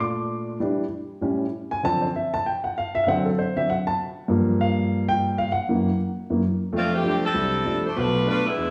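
A brisk swing at 196 BPM in 4/4 drives this energetic, brassy jazz fragment in F major, cut from a longer piece. A warm, intimate grand piano plays alone for the first 6.7 seconds, its action noise audible as it moves through chords like Bbmaj7, A7, Dm7 and a Gb7 before settling on F69. At 6.8 seconds a tight, mellow saxophone section with light vibrato takes the melody over the piano's comping, both set up front in a large studio with a lush 1.5-second reverb.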